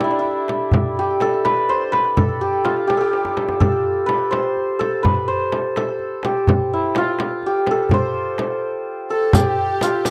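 A stately, festive air runs through this short excerpt of Persian modal ensemble music in a straight 6/8. The santur carries the melody up front, its hammered strings shimmering and ringing between D4 and C5, with a slapback echo trailing each note. Beneath it, a small, bright frame drum played with soft hands sits close and dry, while a warm, tight tombak adds its pulse with the air of a live room, and a drum fill breaks through at 3.1 seconds. Near the end, at 9.1 seconds, a dark chamber violin section slips in with a second line between G4 and A4, bowed sul tasto with vibrato and a soft attack for an intimate feel. A riq follows at 9.3 seconds, its bright jingles struck with hard hands. The sound is that of a close 1970s-style studio, touched by light reverb.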